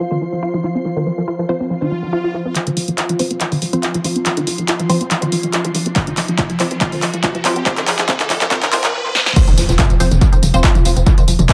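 Dark and industrial, this driving peak-time techno excerpt runs at 141 BPM in a straight 4/4, cut from a longer piece and centred on an F5 chord. It opens with a squelchy, juicy blip pluck riff treated with phaser, tube saturation, chorus and dub echo, a swarming, warbling drone that stops at 8.9 seconds, and a deep, moody ambient pad sitting in the background, all three pumping against the sidechain. From 1.5 seconds muted, detuned dub chord stabs with phaser and tape echo join, and a swell leads into a long build-up from 2.6 seconds, where a punchy, tape-warm analog drum machine of snare, handclaps, hi-hat, tambourine, toms and crash sits up front with dub echo, over a tight, sawtooth-and-square sequencer bass on F1. Filter sweeps move across the pluck and stabs while a riser climbs and drum fills roll, and a layered electronic kick enters at 6.0 seconds as the loudest element. The drop lands at 9.4 seconds with an electronic impact, in an echo-heavy mix with light reverb and a small-room character on the drums.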